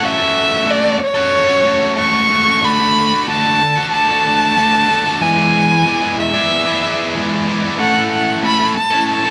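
A single bowed violin carries the melody up front, its dark, smooth-topped tone shaped by expressive vibrato and portamento, while a bright, overdriven electric guitar, picked and double-tracked, drives a riff beside it. This hopeful, soaring rock excerpt moves at 93 BPM in a straight 4/4, tuned to A4 = 441 Hz, with the chords moving from F#m7/A to D, E7 and A. The band plays live together in a stone room whose reverb wraps both parts for the full 9.3 seconds.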